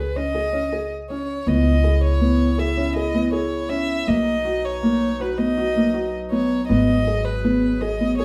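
Restless yet hopeful, this contemporary instrumental passage in 7/4 sets a rich, airy-bowed violin melody up front over felt-muted upright piano arpeggios with audible action noise and a woody pizzicato upright bass, while a distant, mellow woodwind section enters at 1.5 seconds with sustained chords, all moving through C#sus2, C#m7, Bmaj7 and G#m in a wet studio reverb heard from further back in the room.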